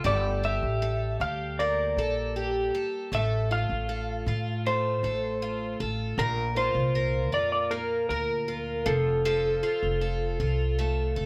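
A slow, straight 4/4 pulse at 78 BPM carries this short cut from a longer acoustic pop piece, tuned slightly low to A4 = 439 Hz, with a reflective, wistful mood. A pizzicato upright bass anchors the low end, its woody, thumpy steel-string tone sitting up front. The picked twelve-string acoustic guitar fills the accompaniment with a shimmering, octave-doubled sound, and a touch of finger squeak comes through close to the ear. From 0.1 s an electric slide guitar carries the melody in a dark, slightly broken-up, compressed voice. The chords move from Gmadd9 to F/A, then Bbadd9, settling on F at 8.9 s. The trio sounds like a band playing live together in one small room, with moderate reverb adding a gentle sense of space.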